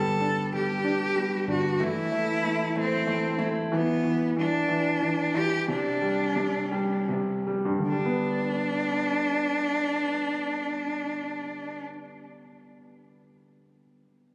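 This six-eight pop ballad in G major is heartfelt and tender, moving at a slow 51-63 BPM. A bowed solo cello carries the melody up front, its nasal, focused tone marked by vibrato and trailed by a delay. A smooth concert grand piano accompanies with deep bass and short sustain. A fingerpicked steel-string acoustic guitar plays full-bodied arpeggios with fresh strings until 4.3 s, and a dark, round, foam-muted electric bass is heard only until 1.8 s. The harmony moves from G to Am, breaks off into a chordless stretch while the tempo slows, then settles on Csus2 before returning to G at 7.9 s; the cello later drops out at 11.8 s. Captured on a phone in the room, this fragment of a longer piece carries club reverb and light studio ambience.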